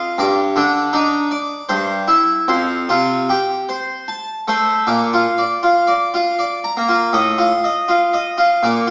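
Classical, baroque-style suite movement for solo harpsichord in Bb major, dance-like and serene, moving at 77 BPM in 3/4 with uneven beats and a supple rubato across a short excerpt cut from a longer piece. The Flemish-style harpsichord sits up front with a full, brilliant plucked sound from three sets of strings, ranging from F2 to Bb5 as the harmony passes through C/G, F, Bb and F7/A, with a G5 heard at 0.2 seconds. A wet recital hall reverb gives the sense of a church or concert hall, though the overall sound has a small-speaker quality, and the opening phrase repeats at 4.9 seconds.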